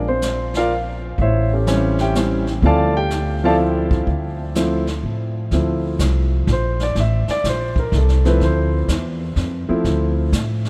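Set in a vast, echoing cathedral-like space, this moody, swinging jazz piano trio fragment in D minor moves at 125 BPM in 3/4, cut from a longer piece. An intimate, up-front grand piano with audible action noise carries the melody over a woody, thumpy pizzicato upright bass, while a distant brushed drum kit with a boomy kick and a rolled-off top enters at 0.2 seconds. Over chords of Bb5, A7#9 and Dm7, the piano steps forward into a solo from 5.5 seconds.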